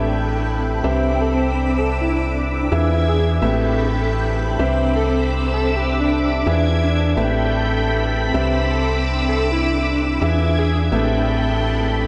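An organ-like FM bass sits up front in this uplifting, feel-good piano house excerpt, its hollow, dark tone striking with a fast attack and decaying between notes at 128 BPM in 4/4 with a light swing on the sixteenths. A clear upright piano plays a woody, slightly detuned riff throughout, shaped by a low-pass filter and analog delay, while a vintage string machine holds shimmering, sawtooth violin chords with ensemble chorus and a filter sweep running across the whole passage. A cloudy granular pad enters at 0.1 seconds and lingers in the background with its own built-in reverb, and an airy, dreamy lead carries a soft melody from 1.2 to 10.8 seconds, colored by chorus, vibrato, cassette tape character and analog delay. An electronic hi-hat and shaker tick along, barely audible, beneath the harmony. The chords cycle through Am9, Cmaj9 and E7b9 in C major, and the whole mix is soaked in a huge ambient reverb that gives it a dreamy sense of space.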